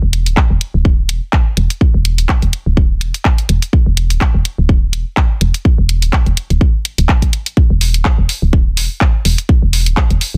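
Built on a lightly swung 16th-note groove in 4/4, this quirky, sparse minimal techno excerpt pairs a punchy, layered electronic kick with a house kit of handclaps and bright hi-hats in studio ambience, while a woody, round FM bass with a fast attack and dark decay pumps with sidechain compression from the start, all pressed into a dense, heavily limited modern master with little reverb.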